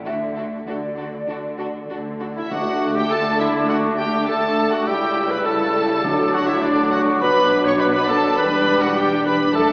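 A straight, brisk 4/4 pulse drives this spirited, graceful classical-period passage for symphony orchestra, cut from a longer piece. From the opening, a rich, focused violin section carries the melody with vibrato, joined by a pure, expressive concert flute and a dark, woody second violin section in the background. Beneath them, a distant, very quiet viola section supplies accompaniment, while smooth, even double basses and cellos with soft attack and portamento share the bass. Around 2.4 s the winds arrive: an oboe and a very quiet, mellow clarinet add second lines, a bassoon with a smooth top joins the accompaniment, and a roomy, distant French horn section holds sustained chords in the background, as the harmony moves through D, A7/C#, Bm and Em7. Very quiet timpani on plastic heads, played with medium mallets, sound from 2.5 s until 6.9 s. The whole ensemble sits in a wet, two-second reverb suggesting a church or concert hall, with an AM radio quality.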